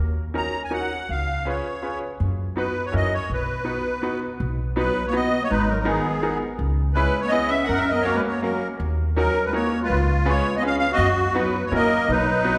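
A whirling, charming musette waltz in three, cut from a longer piece, led by a reedy, shimmering musette accordion up front over a growly pizzicato upright bass with steel strings and a worn, slightly detuned upright piano whose action noise is audible. At 4.8 seconds a dark, smooth clarinet enters in a classical style with a low second line beneath the accordion's melody. The whole ensemble sits in the lingering reverb of a church or concert hall, with chords that circle through D#m7, C#7 and F#7 back home to B.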